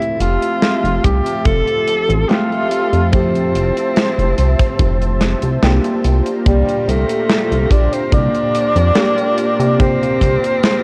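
A straight 4/4 pulse is set by a tight, gritty acoustic kit of hi-hat and medium-tuned snare, joined at 1.0 seconds by a tight acoustic kick, while a glossy, up-front chorused synth bass underpins this dreamy, faded vaporwave excerpt from 0.2 seconds. A mellow, distant tenor saxophone carries the melody with vibrato and tape echo over a phased FM electric piano with a soft pad layer and a thick, detuned unison pad sitting in the background with 12-bit sampler grit, moving from Fmaj7 to C7sus4 at 6.0 seconds. The whole mix sounds like worn cassette tape, its pitch drifting and warbling in a small, lightly reverberant room.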